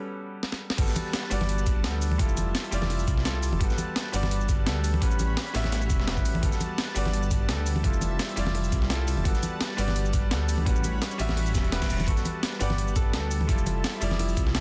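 This excerpt from a longer liquid drum and bass track opens with a clear, open concert grand piano carrying dub echo, a lush, airy unison pad pumping under chorus in the background, and a bright, ringing harp playing delayed arpeggios, all in G lydian at 170 BPM with a lightly swung 16th feel. A breakbeat kit fill arrives at 0.4 seconds with crash, hi-hat, shaker and snare in studio reverb, leading to the drop at 0.8 seconds where a thumpy, gritty electronic kick, a second tape-tinged breakbeat kit with filtered hats and snare, and a deep, rumbling detuned saw bass sitting up front all come in. Hard-hand congas, close and dry, join in the background just after, adding an acoustic layer to the compressed, sampler-style drums. The chords cycle through Gmaj9, Fmaj9 and A13, giving a warm, uplifting mood over the beating low end. A very quiet reverse cymbal rises into 12.1 seconds, where the harp returns for the closing stretch, all within a dense, heavily limited modern master.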